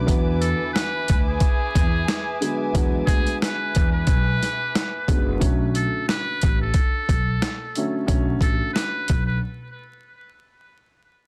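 A dry, dense, heavily limited mix with vinyl crackle carries this reflective, gritty boom-bap excerpt, where a pitched-down, thumpy sampler-style drum kit sits up front under a woody pizzicato upright bass, a dark upright piano with audible action noise, a buzzy metal-muted trumpet melody with vibrato, scooped notes and digital delay, and a sul tasto chamber string section that holds chords until 5.4 seconds, before the parts drop out for a break at 9.4 seconds.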